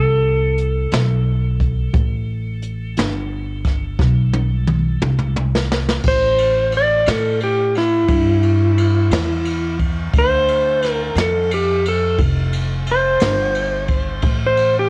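Mournful and soulful, this slow blues in A minor moves at 59 BPM in a straight 12/8 feel, and the clip is cut from a longer piece. A clean, dark lap steel guitar carries the melody up front, played fingered with slide and volume swells, and its tone is coloured by cassette tape. Beneath it, a woody, thumpy upright bass on gut strings plays pizzicato, warm and up front. A jazz kit played with brushes enters at 0.6 seconds, with dark cymbals, a medium-tuned snare and a boomy kick, also carrying a cassette tape colour, and it plays a fill from 4.0 to 6.0 seconds. From 6.0 seconds the slide guitar takes a solo over a shift from Am7 to A7(no3), then Dm7, before settling on Am, all in a dry home recording on cassette with little reverb.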